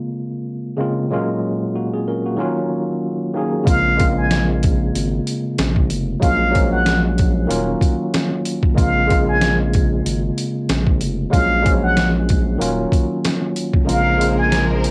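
Gritty and reflective, this boom-bap hip-hop cut moves at 94 BPM in Bb minor with a swung sixteenth-note feel, circling through Bbm9, Gbmaj7/Bb and Ebm9 chords. A worn, slightly out-of-tune tine electric piano opens alone, sitting up front with a cassette-tape character. At 3.7 seconds the rest of the band arrives: a compressed, pitched-down sampler-style drum kit with a thumpy kick, medium-tuned snare and hi-hat, a deep, saturated sine sub bass, and a bright plunger-muted trumpet. The trumpet carries the jazz-style solo melody high in its range, its wah-wah tone and vibrato colored by tape echo. Near the close, at 13.9 seconds, the kick drops out as a lush, bowed studio string section enters briefly with expressive sustained chords and portamento. The whole recording has the feel of a home cassette take with light reverb.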